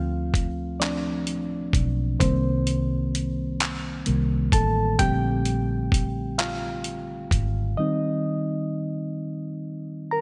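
A reedy electric piano leads this short fragment of a slow six-eight R&B piece, its clean tone heard through built-in speakers and placed up front, carrying the yearning, late-night mood across the full 10.2 seconds. It moves through Dm7, Am7b5 and Bbmaj13 before settling on Eb6, at an unhurried 43 beats per minute counted in dotted quarters. Underneath, a vintage muted fingered electric bass adds a dark, round, punchy low end with an amped, foam-muted character, dropping out at 7.7 seconds. A dusty, sampler-style drum kit of handclaps, hi-hat and a thumpy kick sits compressed and gritty at the front of the mix from 0.3 seconds, then falls away so the piano closes the passage alone. Light reverb and a bright 1980s-style digital production frame the whole.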